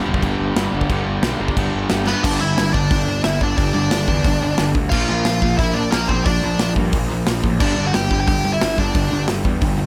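A straight, driving 4/4 punk rock pulse sets this upbeat, energetic cut from a longer piece in motion, with three picked guitars on the riff (a bright distorted one in the background, a warm garage-toned one and a dark, double-tracked crunchy one, both very quiet) over a growly, fuzz-laden picked bass and a punchy, up-front acoustic kit of kick, snare, hi-hat and crash, until a drum fill at 2.1 seconds ushers in a nasal, overdriven lead guitar with a parked wah that carries the melody up front in a nearly dry room.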